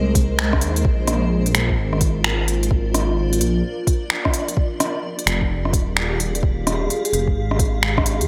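A swung 16th-note groove at 129 BPM in 4/4 drives this wistful, nocturnal future garage fragment, cut from a longer piece, with a soft electronic kick entering at 0.1 seconds beneath a crisp, layered garage kit of finger snaps, hi-hat and rim click that sits up front with a tape-warm edge and the air of a large room. Underneath, a dark detuned saw bass rumbles deep and beating from the very start, its unison sawtooth and sine layers sustained with a fast attack and breathing with sidechain pumping. Above it, a granular cloud pad holds blurred, evolving sustained chords, full-bodied yet softened by a slow attack, long release, its own built-in reverb and a gritty 12-bit sampler character, also breathing with sidechain pumping. The harmony drifts from Abadd9 to Bb and then settles on Fmadd9 at 4.6 seconds, deepening the melancholy. Light digital ambience wraps the whole mix, which runs to 8.3 seconds.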